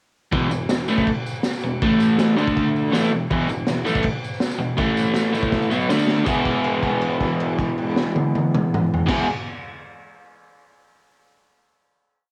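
An up-front, bright, double-tracked overdriven guitar and a gritty, saturated breakbeat kit with a punchy kick and dark cymbals kick off at 0.3 s, stomping through a swaggering, rowdy garage rock power-chord riff in E major at 160 BPM. A jingly, band-limited tambourine sits in the background, and the cassette-taped drums carry a rolled-off top in a small-room home recording. A drum fill at 5.5 s sets up a final E chord that rings out from 6.3 s to close the whole piece.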